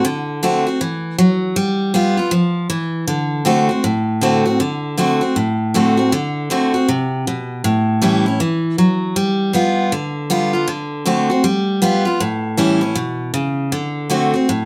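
Swung eighth notes drive this rowdy, rollicking rock cut along in a brisk 4/4. A picked steel-string acoustic guitar carries it alone from 0.0 to 14.7 seconds, its dreadnought tone bright and full-bodied and sitting up front in the mix. The harmony cycles through dominant seventh chords, moving from D7 to G7 and back, then on to A7 before settling on D7 at 13.7 seconds. A moderate studio reverb gives the sound the feel of a live performance in a single room. The clip is taken from a longer piece.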